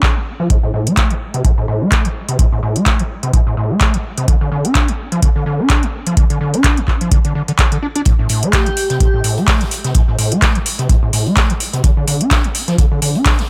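Acid house with a raw, hypnotic drive, this short cut from a longer piece rides an up-front overdriven kick and a booming analog drum machine of handclaps and metallic hats, under a squelchy, gritty acid bass riff with resonant filter sweeps, sidechain pumping and dub echo. At 8.1 seconds a very quiet open jazz kit adds natural hi-hat and snare. At 8.5 seconds an airy, dreamy lead touches a single soft, sustained note through chorus, phaser and dub echo, all set in an echo-heavy digital ambience.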